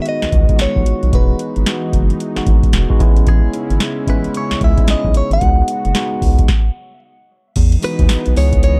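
Punchy and confident, this new jack swing R&B excerpt rides a swung sixteenth-note groove in 4/4. A booming analog drum machine sits up front with a deep kick, crisp snare, metallic hi-hats, tambourine and crash cymbal, entering at 0.1 seconds, with a round, wave-folded analog bass joining just after in the background. A bright, compressed clean electric guitar, picked and recorded direct, carries the melody through phaser and tape echo. A tine electric piano played through a combo amp supplies accompaniment, while a detuned sawtooth pad with chorus holds smooth, slow-attack chords beneath, moving through G#m7, Emaj9, Amaj7 and C#7sus4. A stop at 6.5 seconds gives way to a short new section on Emaj7 at 7.6 seconds, all within a dark, dry production.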